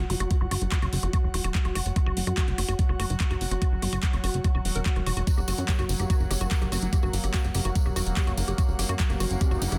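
Alien and intense, this psychedelic trance clip drives at 145 BPM in F# major, anchored by an overdriven, knocking electronic kick up front and a punchy, funky plucky analog bass, while a garage drum kit adds overdriven handclaps and metallic hats. A woody, warbling wave-folded pluck carries the riff with chorus, delay and sidechain pumping, over a bubbling, resonant stepped-filter texture holding sustained chords and a breathy, airy pad glimmering in the background. A jingly, close and dry tambourine joins at 5.3 seconds, and a background riser appears at 9.3 seconds, all within a dense, heavily limited modern master.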